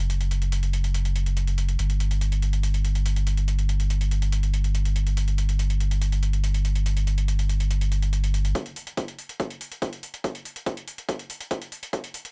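A saturated sub bass opens this short cut from a longer driving peak-time techno track, deep and thick with a sine-like core, fast attack and long sustain, sitting up front and pumping against a sidechain beneath a low-pass filter. It holds low between F#1 and G1 until 8.5 seconds, giving the dark, hypnotic mood its weight at 142 BPM in a straight 4/4. Metallic electronic hi-hats run throughout, layered and pumping too, carrying a small-room re-recorded character. At 8.6 seconds a punchy, layered electronic kick drum arrives up front, high-pass filtered, as the music turns into a build-up that closes with a brief drum fill. The sound is dry and gritty, with little reverb and the rough grain of hardware captured to cassette tape.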